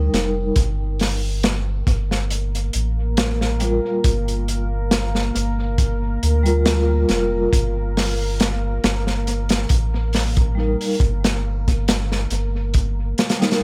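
Trip hop at a slow 69 BPM in G minor, this brief section from a longer piece feels smoky and brooding, with a gentle swing on the sixteenths. A crunchy breakbeat kit sits up front, its saturated, gritty hi-hat, tight kick and medium-tuned snare carrying a rolled-off top and a touch of analog delay. Beneath it, a soft dub sub bass supplies a deep, round tone that sustains under the beat. A vibraphone played with soft mallets rings out metallic and airy, coloured by motor vibrato, tremolo and tape echo. From 1.4 seconds a dark ambient pad fades in behind everything at a low level, its detuned sawtooth layers and sub octave thickened by chorus and reverb. The harmony moves from Eb to Gm7 and settles on a rootless Eb/G at 7.5 seconds, all within an echo-heavy mix.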